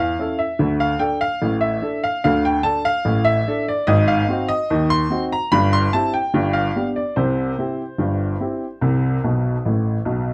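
Ragtime piano in a jaunty, playful mood, this short excerpt is cut from a longer piece and moves in a straight two-beat metre. A lone upright piano carries everything from start to finish, ranging from G1 low in the bass up to C6. Its tone is clear and woody, slightly detuned, with a long sustain that lets notes ring, and it sits present and up front. The harmony travels through chords such as D5, Ab7 and C/G before settling through G7 onto C at 7.2 seconds, and the piano adds a fill from 9.2 seconds to the close at 10.3 seconds. Light reverb and a dark, warm production frame the sound.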